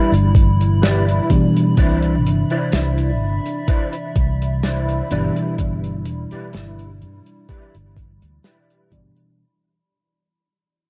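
This vaporwave fragment drifts by in a nostalgic, faded mood, cut from a longer piece and fading out across its full 9.4 seconds. A soft, round FM electric piano carries the accompaniment through ensemble chorus and tape echo, while a warbling, detuned pad with a slow attack and long release holds sustained chords beneath, roughened by vintage 12-bit sampler grit and its own built-in reverb. A dark, clean electric guitar plays a fingered riff, also treated with chorus and tape echo, until it stops at 8.9 seconds. Up front sit a round, amped fretless bass and a thumpy, overdriven electronic kick that sounds re-recorded in a small room, with a mid-forward soul kit adding hi-hat and a medium-tuned snare with a rolled-off top. The harmony moves from G6 to Cmaj9 and back, and the whole production has a dusky cassette-tape character.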